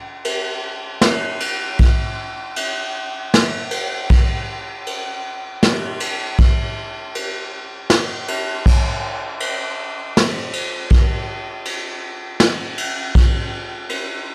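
Festive yet bittersweet, this short klezmer excerpt in 3/4 starts around 79 BPM with a straight feel and gradually speeds up across its 14.3 seconds. A vintage brush drum kit carries the whole passage from 0.2 to 14.1 seconds, its medium-tuned snare, punchy kick, ride and crash cymbals sounding acoustic and up front, with a rolled-off top. Light reverb gives it the feel of a small room as the same section is played twice.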